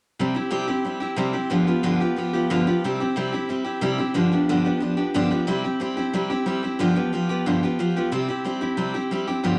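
Bathed in wet studio reverb, this retro, rowdy rock fragment at 182 BPM in C major features a solo picked steel-string dreadnought acoustic guitar, bright, full-bodied and up front, moving between C and G7 from 0.2 to 9.6 seconds, with a second section arriving at 5.5 seconds.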